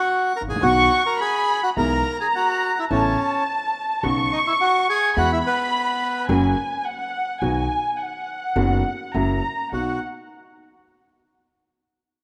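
Passionate and nostalgic, this tango in B major moves at 106 BPM in 4/4 with a rubato feel, taken from a longer piece and set in a lush hall reverb within a rough home demo mix. An up-front, reedy bandoneon carries the melody until 6.3 seconds and returns briefly at 9.7 seconds, while a dark, bowed violin section with vibrato and a smooth top sustains a second line high above from the start. A boxy upright piano with short sustain supplies warm accompaniment and a woody, growly pizzicato upright bass holds the low end, both entering at 0.4 seconds, as the harmony moves from F# through E/B and Aadd9 before settling on F#7 and back to B.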